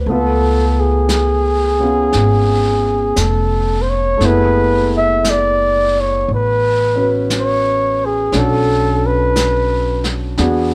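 A mellow flugelhorn carries the melody up front, close-miked and sung with vibrato, in this late-night, romantic jazz ballad cut from a longer piece. Beneath it, a pizzicato upright bass sounds woody and dark, a concert grand piano accompanies with an intimate tone, deep bass, long sustain and audible action noise, and a vintage kit adds brushed snare and hi-hat with a rolled-off top from a small room. Swung eighths and light reverb frame the harmony as the chords move from C#7b13 to F#m11 and Bm7.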